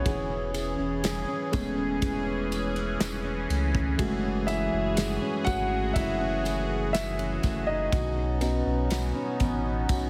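A slow, straight 4/4 pulse drives this hopeful, heartfelt pop ballad, with a studio drum kit of punchy kick, medium-tuned snare and ride cymbal breathing in a pumping room sound from 0.1 seconds, while a jingly, saturated tambourine sits in the background. A grand piano with long sustain carries the solo line throughout, moving through Amaj7, F#madd9 and Badd9. Beneath it, a deep, round sine sub bass sits up front with a mellow, sustained tone. A fingerpicked, full-bodied jumbo steel-string acoustic guitar spins arpeggios, and a bright, evolving pad built from detuned sawtooth and wave-folded triangle tones holds sustained chords with a slow attack, colored by chorus and phaser. Light small-room reverb and heavy, radio-style compression give the mix a tightly packed finish in this short cut from a longer piece.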